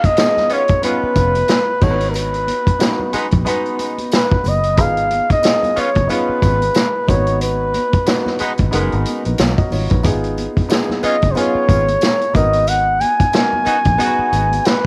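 Lush 1970s-style soul with a silky, bittersweet mood, taken from a longer piece and moving at an easy swung pace over alternating C#7 and G#m7 chords. A breathy, mellow flugelhorn carries the melody up front, with light vibrato, scooped notes and a jazz-style solo voice trailed by tape echo. A polished grand piano with short sustain plays accompaniment beneath it, while a smooth-topped horn section adds pop-style stabs from 0.5 seconds. The vintage drum kit sits up front with a saturated, gritty cassette character, a tight kick, a medium-tuned snare and dark cymbals on crash and hi-hat. Very quiet high-tuned congas played with soft hands and a jingly tambourine come in at 0.2 seconds, and a round, foam-muted fingered electric bass enters at 1.0 seconds. The whole take has the small-room ambience of a home recording on cassette.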